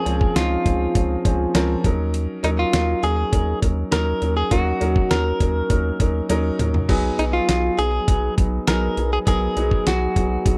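A dusty, sampler-style drum kit sits up front with a thumpy kick, fat snare, hi-hat, toms and crash, gritty and compressed, and it marks a fill between 6.3 and 6.9 seconds in this uplifting, glossy 1980s-style pop piece at 101 BPM in straight 4/4. A clean, direct-recorded electric guitar carries the melody with harmonic tremolo and slapback echo, while an open baby grand piano with long sustain accompanies and a round, deep analog bass with a nasal, dark tone holds down the low end. The chords move from Dbmaj7 to Ebm7 and then to Cb6 in a dry, close 1970s-style studio sound with light reverb, cut from a longer piece.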